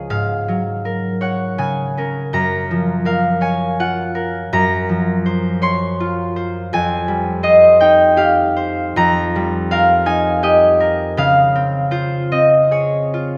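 A solo concert harp opens at once, warm and ringing up front in a wistful, gentle classical piece at 81 BPM in a rubato 3/4, its fingerpicked chords spanning Db2 to C6 as they drift from Ab11 through Gbmaj7 and Fm9 to settle on Dbmaj7 at 11.2 seconds, all bathed in a wet concert hall reverb in this 13.4-second fragment of a longer work.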